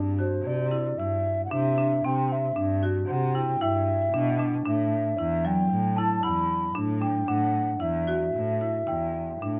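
Contemporary chamber music in a restless yet hopeful 5/4 at 114 BPM in C lydian, this short excerpt sets woody marimba arpeggios over a dark, bowed cello bass line with vibrato, while a slightly out-of-tune, bell-like celesta adds delicate texture in the background and a mellow, airy baroque flute with an unsteady, soft-attacked tone carries the melody up front from 0.2 s, as the harmony moves from Cadd9 to A5 at 4.7 s in a close, detailed sound with light reverb.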